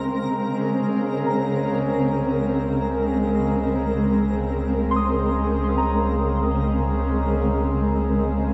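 Soaked in a lush hall reverb, the mix sounds dreamy, with lossy compression artefacts. This brief ambient passage in free time, cut from a longer piece, feels peaceful and luminous as it moves from Bbm7/Db to Abadd9/Db. Up front, a shimmering, ethereal pad holds dark, detuned chords with a slow attack and long release, its octave-up shimmer and chorus giving it a gently evolving surface. High above, muted felt-like synth keys play soft, intimate arpeggios with fast, decaying notes, coloured by chorus, tape echo and a touch of ring modulation. A round, deep analog bass fades in on a single low note, and from 0.5 seconds a reedy, breathing harmonium adds a mellow drone in the middle register. In the background, a twinkling granular texture sparkles with FM tones and reverb as it slowly fades out.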